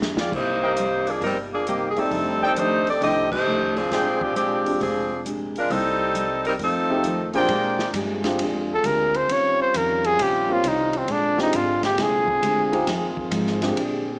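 Heard through a small-speaker tone with moderate large-studio reverb, this energetic big band swing excerpt moves at 134 BPM in Bb mixolydian. It opens on a short drum fill, carried by picked steel-string acoustic guitar, growly pizzicato upright bass and a drum kit with dark cymbals and a punchy kick. A bright saxophone section carries the up-front melody while a smooth-topped trumpet section adds stabs, a concert grand piano with audible action noise joins at 2.0 s, and the band hits an accent at 3.2 s. From 7.5 s a close-miked trombone section holds sustained chords in the background as a breathy solo trumpet with light vibrato takes the lead.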